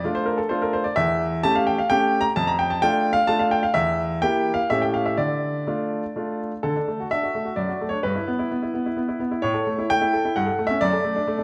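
A clear, intimate baby grand piano sits up front in a wet recital hall, its long sustain blooming into the reverb while the noise of its action stays audible. This short cut from a longer classical-period sonatina moves at 129 BPM in a straight 3/4, with a playful, cheerful character. The solo piano ranges from E2 to Bb5, opening in D minor with a phrase that passes through A7 and a diminished chord before settling back on the tonic. At 6.6 s the same opening idea returns in D major, brightening the mood as it moves through D/F# and A toward A7/G. The passage closes on D/F# at 10.8 s, keeping a natural, unforced sound throughout.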